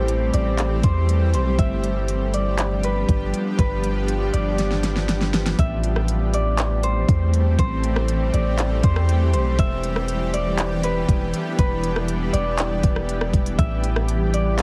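Heavily compressed and dry with a radio-like squeeze, this hazy, spacious half-time cloud-rap fragment pairs a bright, fingerpicked concert harp melody, low-pass filtered and echoed by delay, with a shimmering, ethereal ambient pad whose detuned, granular chords pump against the beat, while a deep, mellow 808-style bass sustains long, decaying tones and an up-front electronic R&B kit with a knocking kick, fat snare, crisp hats, claps and rim clicks, roughened by overdrive and 12-bit sampler grit, rolls through a fill at 4.6 seconds as the Am7 and G7 harmony gives way to Am7 and Em7.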